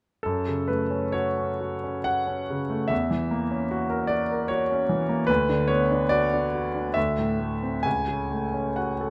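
Passionate and stormy, this short excerpt of a romantic classical character piece for solo piano moves in 3/4 at 62-78 BPM with a free, rubato feel in F# minor. A concert grand plays alone from 0.2 to 9.1 seconds, spanning C#2 to G#5, its tone clear and polished with deep bass, long sustain and audible action noise. Close, detailed miking places the piano up front in an intimate, lightly reverberant space as the harmony moves from F# minor through F#7 and B minor before settling back toward F# minor.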